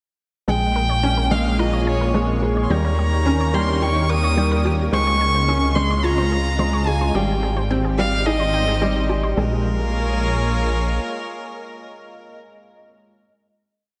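A bowed solo violin carries the melody of this moving and cinematic piano-and-strings electronica piece, sitting up front with smooth vibrato and arching motif-based phrases touched by delay. Alongside it, a felt-muted upright piano plays an eight-step arpeggiated riff, soft and intimate with audible action noise, treated with ensemble chorus and delay; it is the last part sounding, playing on until 14.0 seconds. A lush, thick detuned pad with chorus holds slowly shifting chords through Bbm7, Eb7, Dbmaj7 and Abmaj7. Deep in the mix a round, nasal analog pluck with chorus and delay cycles a six-step loop that drifts against the bar. A dark, rumbling detuned saw bass anchors the roots up front. At a straight 108 BPM in 4/4 and in Bb dorian, the drop resolves at 9.4 seconds onto a final Bbm7, all bathed in a dreamy hall reverb with a soft, rolled-off top.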